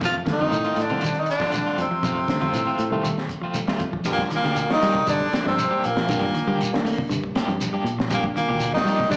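Afrobeat at 119 BPM, intense and driving, this short cut heard through a club PA opens on F7, moves to Ebmaj9 at 4.1 seconds and reaches Cm9/G at 6.1 seconds, with an edgy, up-front tenor saxophone carrying the melody over a round, foam-muted fingered bass and a crunchy breakbeat kit with a high-tuned snare, tight kick and dark cymbals, plus a grainy shekere. Behind them, a raspy baritone saxophone and a whispered, very quiet trombone play second lines, while a dark semi-hollow guitar arpeggiates and a slightly broken-up guitar adds stabs with tremolo. A worn, slightly out-of-tune reed electric piano enters at 0.3 seconds, and slapback echo touches the baritone, both guitars and the piano.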